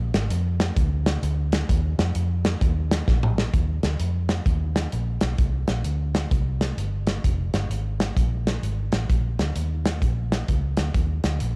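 Swung eighth notes drive this uptempo gospel groove in 4/4, giving it a jubilant yet reverent lift. A muted, fingered electric bass anchors the low end with a dark, round, amped tone that stays punchy and up front. Beside it, an acoustic drum kit of hi-hat, kick, snare and toms sits equally forward, its medium-tuned snare and punchy kick colored by cassette tape and a pumping studio room. A drum fill from 3.1 to 3.5 seconds carries the music into a new section that runs to the close at 11.6 seconds. Captured as a home cassette recording with little reverb, this short cut from a longer piece feels close and unvarnished.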